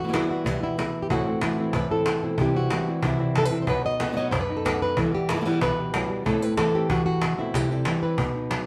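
Flamenco at a driving 186 BPM in 4/4: an intense, passionate fragment of a longer piece. A fingerpicked acoustic flamenco guitar carries the melody up front, a second warm fingerpicked guitar punctuates it with stabs until 8.2 s, and a woody, band-limited cajon with faint snares and hard hands sits forward in the mix. They cycle through Em, Am, C and B in a wet studio reverb that places the trio further back in the room.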